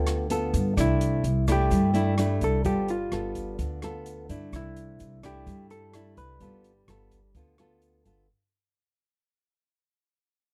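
A breezy, relaxed bossa nova excerpt at 128 BPM in 4/4 with a straight feel opens on a dark, clean hollow-body electric guitar carrying the melody over fingerpicked classical nylon-string accompaniment and a woody, thumpy pizzicato upright bass set up front. An airy, polished jazz kit adds hi-hat, rim click and a boomy kick from 0.1 seconds, joined by a grainy, very quiet egg shaker, as the harmony sways between G9 and C6/9. The close, detailed sound has little reverb, and the whole passage is cut from a longer piece under a fade-out.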